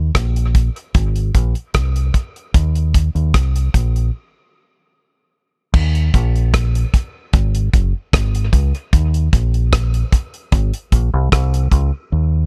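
A damped, dry 70s acoustic drum kit sits up front with a tight kick, rim clicks, hi-hat and dark crash cymbals under a rolled-off top, alongside a round, deep fingered electric bass that sounds direct and amped in its low register, in a spacious, meditative dub reggae excerpt with little reverb and a break at 4.1 seconds before a new section opens at 5.7 seconds.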